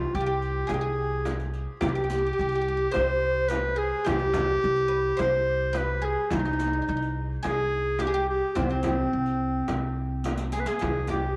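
A soft-attacked clarinet leads this hypnotic, soulful Arabic maqam ensemble piece, singing a classical-style solo melody up front with a smooth top and a touch of tape echo. Set in C maqam nahawand at 107 BPM in a straight 4/4, it is cut from a longer piece. Beneath the clarinet, a fretless, plectrum-plucked oud adds a woody second line with the deep ring of its double strings, while a thumpy pizzicato upright bass with steel strings holds the low C up front. The frame drum, large and distant, enters at 0.7 s, and a riq with dark jingles and soft hands sits in the background of the same large room. The ensemble shares a moderate spring reverb, and a drum fill at 10.3 s closes the section.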